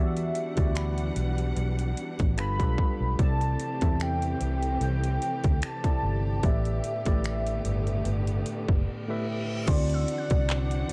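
A lightly swung 74 BPM groove in 4/4 opens this late-night, sensual contemporary R&B excerpt: a hard-clipped trap kit with metallic hats, snaps, claps and gritty 12-bit sampler texture enters at 0.2 seconds beneath a round, foam-muted electric bass, clean tine electric piano, a lush bowed string section and a velvety, detuned sawtooth lead with chorus and delay. A woody FM mallet pluck with phaser sits in the background, and a reverse cymbal at 8.8 seconds leads into a short break. The harmony moves from Em9 through G9, C6 and A9sus4 before landing on D9 at 9.7 seconds, all in a dark, dry production.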